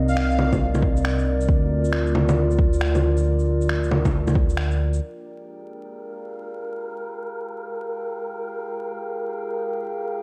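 Future garage at 136 BPM in F dorian, this excerpt from a longer piece feels wistful and ghostly, with a swung 4/4 groove. A dark analog pad carries sustained chords throughout, its moody, detuned tone roughened by 12-bit sampler grit, chorus and sidechain pumping as it moves from Cm7 to Bb/D and then to Fmadd9 at 5.0 seconds. Underneath, a rumbling detuned saw bass with tube saturation and sidechain pumping holds the low end until 5.0 seconds, joined by an overdriven, gritty electronic kick and a set of electronic shaker, finger snaps and bongos muffled by low-pass filtering, both drum parts re-recorded in a large room. An airy, dreamy lead flickers for a brief moment on a single high note near the start, softened by chorus, cassette tape and analog delay. After the beat drops away, a breathy, wind-like tuned noise texture drifts in at 5.8 seconds beside the pad, its own reverb adding to the scoring stage ambience and vinyl crackle that haunt the whole track.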